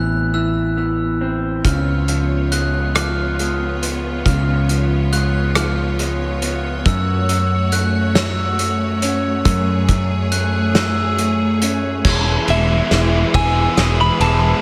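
A soaring, hopeful post-rock excerpt in a steady 6/8, where a lo-fi, slightly broken-up electric guitar and a sparkling glockenspiel with brass mallets spin delayed arpeggios over an up-front picked bass, joined at 1.6 seconds by lush, vibrato-rich strings and a loose indie drum kit with dark cymbals and a punchy kick, before a build-up and drum fill at 12.1 seconds bring in an overdriven, chorused garage-guitar riff, followed moments later by a twangy lead guitar melody, all soaked in a dreamy hall reverb.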